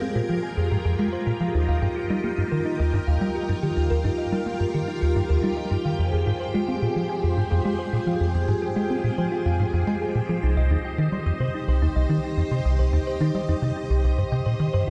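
Mysterious and hypnotic, this ambient, sequencer-driven space music excerpt rests on a tight, punchy sequencer bass riff that sits up front, its sawtooth-and-square tone shaped by a plucky filter, analog chorus and delay. Over it, a lush vintage string machine holds soft-attack chords through phaser, ensemble chorus and shimmer reverb, while a round, tine-like synth pluck spins gentle arpeggios with chorus, delay and its own shimmer. All three parts play throughout the 14.9 seconds, moving through Fmadd9, Ebadd9 and Cm, and the production is dark and bathed in a long plate reverb.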